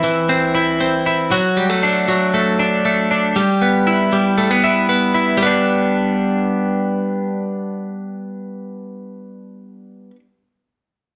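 Breezy and youthful, this short indie pop cut at 118 BPM in 4/4 and G major features a soloing twelve-string electric guitar, bright, twangy, clean and compressed, sitting up front in a reverberant large studio room as it picks through C/E, D and Em before settling on G at 5.4 seconds.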